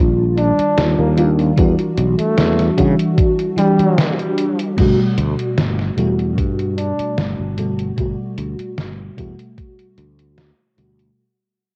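An FM electric piano with a soft pad layer opens alongside a growly, sustaining fretless bass in this woozy, faded vaporwave excerpt at 75 BPM, the piano lush and detuned under tremolo, chorus, cassette tape and tape echo, while a mellow, close-miked flugelhorn carries the melody from 0.4 to 7.3 seconds, a gritty, detuned 8-bit drum machine and a thumpy electronic kick drift through a home-cassette spring-reverb haze, and after a break the music fades out from 4.8 seconds over chords moving from Ebmaj9 to Em9 to Gmaj9.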